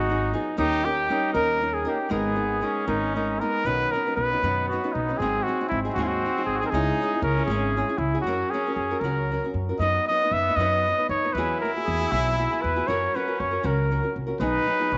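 Romantic and festive, this rubato mariachi passage in 6/8 at 78 BPM is cut from a longer piece: an up-front, classical-style trumpet carries the melody while a second trumpet with light vibrato plays a lower line, a small fingerpicked nylon-string guitar and a woody, thumpy pizzicato upright bass on gut strings support them, and moderate echo-chamber reverb surrounds the group as the harmony moves from G# minor to B major at 3.7 seconds.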